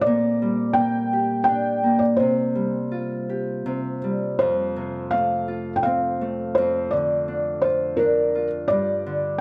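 Sleepy and gentle, this children's lullaby drifts in a flexible, rubato three-beat sway, sounding like a short fragment lifted from a longer piece. A felt-muted upright piano carries the melody in a dark, intimate voice, its thick felt and audible action noise placed up front, while a Celtic harp fingerpicks a ringing, warm accompaniment beneath it throughout. Close, detailed microphones and light reverb keep both instruments near as the phrase is stated and then repeated.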